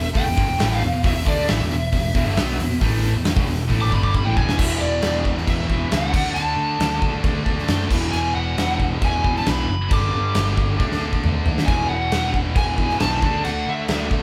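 A gated 80s drum kit sits up front with a punchy kick, bright cymbals and an airy stone-room sound, driving this powerful, swaggering hard rock cut at 136 BPM while a lead guitar through a small cranked amp solos over the opening 4.6 seconds and carries the melody in its overdriven upper range. Beneath it, a picked electric bass growls, and three riffing guitars stack up: an overdriven semi-hollow guitar, a scooped high-gain guitar in the background, and a very quiet double-tracked heavy high-gain guitar. Drum fills mark 3.7 and 10.8 seconds, and the band sounds like it is playing live together in a large studio with moderate reverb.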